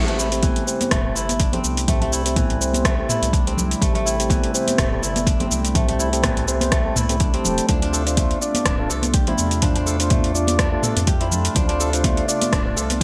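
Bright 1980s-style digital production with light reverb frames this earthy, driving afro house excerpt at 124 BPM in A minor, where crisp fingerpicked kora arpeggios with delay and mellow tonewheel organ stabs, carrying key click, a slow rotary speaker and a filter sweep, ride over a smooth, detuned analog pad in the background and a round, dark analog bass, all four pumping to the sidechain as Am7 shifts to Dm7 at 7.7 seconds, while an up-front afro-pop kit of metallic hats, cabasa, rim click and toms in gated reverb is joined at 0.4 seconds by a deep, layered electronic kick and soft-handed congas ringing in the background.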